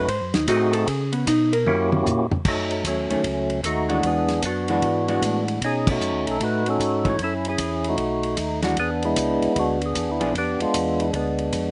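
A dry, close recording with a dusky top end carries this swinging, bluesy soul jazz organ trio, cut from a longer piece, at 152 BPM in a loping swing. A fat, lightly overdriven, percussive tonewheel organ sits up front on the melody from the start, played through a slow rotary speaker and slapback echo. A dark, cleanly picked hollow-body electric guitar with slapback echo takes a short opening solo, and a drum fill at 1.7 seconds leads into the next section. Beneath it all a round, mellow organ plays the bass line with key click and vibrato, while the acoustic soul kit with its fat snare and tight kick sits lower in the mix; the band hits an accent at 5.8 seconds, and the guitar drops out at 10.3 seconds.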